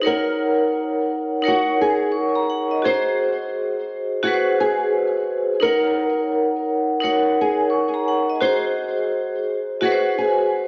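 A bright, ringing vibraphone struck with hard mallets opens this dark, reflective hip hop fragment, sitting up front with slow motor vibrato and a cassette-tape tint, while a small, fingerpicked nylon-string guitar carries the melody through analog chorus and delay over a swung Ebm7 to Ab7 vamp, all bathed in a dreamy plate reverb.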